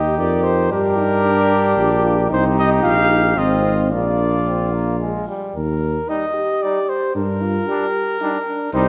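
Heard in the moderate bloom of a scoring stage, this noble, triumphant classical brass quintet passage in 3/4 at 113 BPM places a mellow, up-front cornet on the melody above a trumpet second line with light vibrato and soft attack, joined by a brilliant, vintage-toned trombone and a distant, roomy French horn in the background as accompaniment, while a bass trombone with light vibrato anchors the low end, all moving through Eb, Gm, Cm, Fm7/Ab and Bb harmonies across 8.9 seconds cut from a longer piece.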